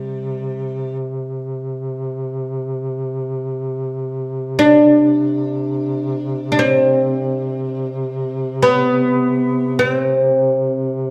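Caucasian folk lament in free time, solemn and longing, where a woody, fretless oud plucked with a plectrum on double strings carries the melody up front while a mellow duduk holds a low drone with vibrato and scooped notes, both sounding through a moderate recital-hall reverb across this 11.1-second excerpt cut from a longer piece.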